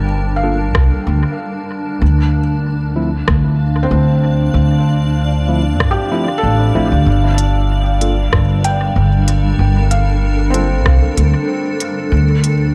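Ambient dub at 95 BPM in G minor, this spacious, meditative fragment of a longer piece drifts over a lightly swung 4/4 pulse, moving from Gm7 to Dm7 and back to Gm7 before closing on a D7 chord with its third omitted. A cloudy, detuned granular pad holds sustained chords throughout, its slow-attack sine tones blurred and evolving yet bright and full-bodied under its own built-in reverb. A felt-muted upright piano plays soft, intimate arpeggios with audible action noise, its mellow tone trailing dub echo. Meanwhile a tine electric piano adds clean stabs from 0.4 to 10.7 seconds, sitting in the background as if through built-in speakers and also echoing. The woody, dark pizzicato upright bass is the most up-front voice, anchoring the low end across the whole passage. From 0.7 seconds a tape-warm electronic kit brings smooth hi-hats and rim clicks with studio reverb and dub echo. It is joined at 0.8 seconds by a deep electronic kick re-recorded in a large room, all set in a light overall reverb.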